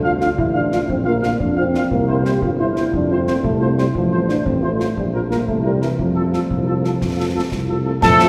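A proud, festive military-style march for wind band in 6/8 at 118 BPM in F major, cut from a longer piece, where a punchy, tight trumpet section carries the melody over a smooth-topped euphonium second line, a very quiet French horn section, an up-front tuba bass and concert snare, bass drum and bright clash cymbals entering at 0.2 seconds, with a brief crisp piccolo note and clear trombone chords arriving at 8.0 seconds, all set in the roomy, distant wash of a wet cathedral reverb.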